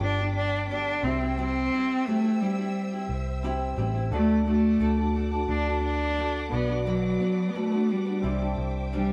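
A bowed cello carries the melody up front with warm vibrato and a smooth top in this easy-going, sunny acoustic pop excerpt, over a round, punchy, foam-muted electric bass, woody fingerpicked nylon-string guitar, a polished baby grand piano set in the background and veiled con sordino strings holding soft sustained chords through G, C, D, Bm and Cadd9, the band playing live together in a stone room with moderate reverb.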